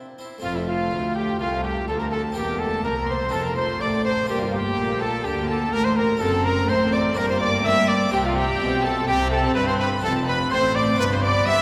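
Lively and festive, this is a short cut from a baroque-style concerto movement in a straight 4/4, built around a clear solo trumpet that sits up front with a soft attack and light vibrato. High above it, a chamber violin section carries a second melody with a reedy, gut-string tone, while another violin section plays a supporting line in the background. A viola section fills in the middle of the accompaniment alongside a plucked harpsichord with a full sound from two sets of strings. From 0.4 seconds a cello section and a rich double bass section join to anchor the bass, with the harpsichord reaching down into the low register beside them. The ensemble is bathed in a wet cathedral reverb with a long 6.6-second decay, giving the period-style strings a spacious church or concert-hall setting.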